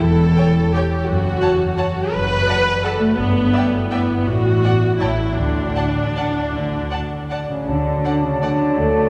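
A sweeping, festive classical passage in D major and 3/4, flowing with rubato at 147-188 BPM, opens with rich, smooth violas up front over mellow, ringing harp arpeggios and a bowed cello and double bass foundation; two violin sections enter at 0.4 seconds with a soft sul tasto melody and a lush, distant second line, before dark French horn chords arrive at 7.5 seconds and a bright clarinet, hollow flute and background bassoon join at 7.7 seconds, with the whole ensemble bathed in a long cathedral reverb.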